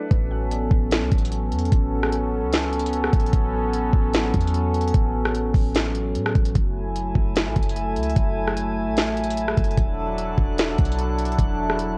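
Atmospheric cloud-rap hip hop in A major at 149 BPM with a half-time feel, this blissful, dreamy excerpt drifts through A69, F#m9 and E9sus4 chords on an up-front, warbling, detuned analog pad with chorus and sidechain pumping, a deep, boomy, sine-like 808-style bass, and an electronic trap kit of knocking kick, sharp snare, crisp hats and rim click, while a glassy, bright harmonics texture with chorus and its own reverb floats in the background for a brief moment at the start and again from 6.8 s, all under light reverb and the hazy pitch drift and muffled low-pass tone of worn cassette tape.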